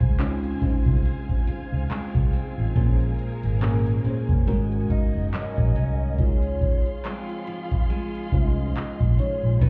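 Contemporary R&B with a smooth, romantic mood and a gentle swing, heard as a short cut from a longer piece. A booming analog drum machine with a deep kick, metallic hats and handclaps sits up front beside a dark, round, foam-muted fingered electric bass. Around them, a lush, dreamy FM electric piano with a soft pad layer and chorus carries the accompaniment, adding a fill at 4.5 seconds. A bright picked steel-string acoustic guitar plays arpeggios through delay, while a studio string section holds sustained, bowed chords with expressive vibrato. At 4.9 seconds a hollow, woody, clarinet-like synth lead enters with the melody, soft and mellow, colored by chorus and delay. The whole mix sounds muffled, as if heard through a wall, and bathed in club reverb.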